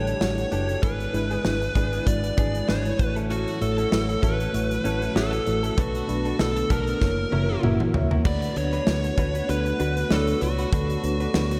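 1980s-style pop at 97 BPM in 4/4 with a light swing on the sixteenths, this short cut from a longer piece feels urgent and moody, floating in a dreamy mix soaked in lush hall reverb. A compressed, up-front fuzz lead guitar carries the melody, its distorted tone trailed by analog delay, while a mellow FM electric piano with chorus supplies soft, decaying accompaniment. Beneath them, a clean, direct-recorded electric guitar picks a riff through lush chorus and delay, and a very quiet string machine set to cellos holds warbling, sawtooth-edged sustained chords. A dark, foam-muted fingered bass adds round, punchy low end, and a modern studio kit with a tight kick and medium-tuned snare enters at 0.1 seconds, rolling through a fill from 7.0 seconds. The harmony moves from A7sus4 through E7/G#, F#m7/A and Bm7 to F#7 before the passage shifts to a new section on D6 at 8.3 seconds.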